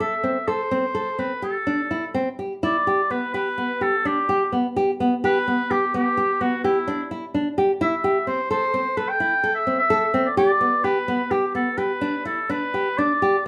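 A warm oboe with light vibrato carries a pensive, hypnotic melody over fingerpicked nylon-string guitar arpeggios in this contemporary chamber excerpt in 11/8, both parts up front in a wet studio reverb as the harmony moves between Am7, Em, Am and Em7.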